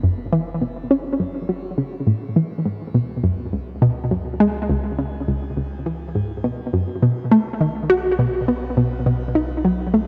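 A dreamy, reverb-soaked sound with a moderate plate tail hangs over this cosmic, expansive slice of sequencer-driven ambient space music, moving at 103 BPM in a straight 4/4. Up front, a bright, detuned analog pluck with a sawtooth edge and a fast, short-decaying attack plays the riff through chorus, analog delay and shimmer reverb, while a filter sweep runs across its arpeggio. Beneath it sits a deep, dark, faintly nasal analog bass, and the harmony moves from F#5 to C#5 at 2.4 seconds and to B5 at 7.0 seconds.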